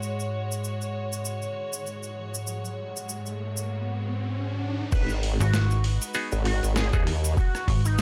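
A gritty, playful glitch hop cut sits in digital ambience, at 98 BPM in 4/4 with a swung sixteenth feel in G# minor. The opening bars float on a warm, pure studio string section, bowed sul tasto in sustained chords that pump against a sidechain while a filter sweep moves over them. A mellow, grainy cabasa ticks throughout, and an electronic riser builds from 1.5 seconds. The drop lands at 4.9 seconds on a G#m7 chord: a thumpy, pitched-down electronic kick sits up front beside a boom bap sampler-style kit with a high-tuned snare, rim clicks, hi-hat and crash, all re-recorded in a large room. Underneath, a saturated formant-sweep wobble bass with chorus and overdrive is joined by a snappy FM bass with a metallic attack and tube saturation. Above them, an edgy, tearing sync lead with vibrato, chorus and delay carries the melody, and a hollow, nasal clav adds stabs from 6.1 seconds.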